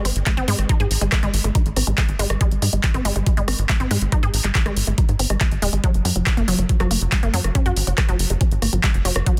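Hypnotic and psychedelic, this psychedelic trance excerpt drives along at 140 BPM in a straight 4/4, tuned slightly flat to A4 = 435 Hz, with a filter sweep running across the synth arpeggio throughout and the harmony moving from Ab5 to Gb5 at 5.8 seconds. A lush, detuned unison pluck with a wave-folded edge carries the riff through sidechain pumping and delay, while a tight, dark sequencer bass of sawtooth, square and triangle tones punches underneath. An overdriven, layered drum kit of handclaps, rim clicks and bright hi-hats is joined at 0.3 seconds by an up-front, knocking electronic kick, all sitting in a dry, dense, heavily limited modern master.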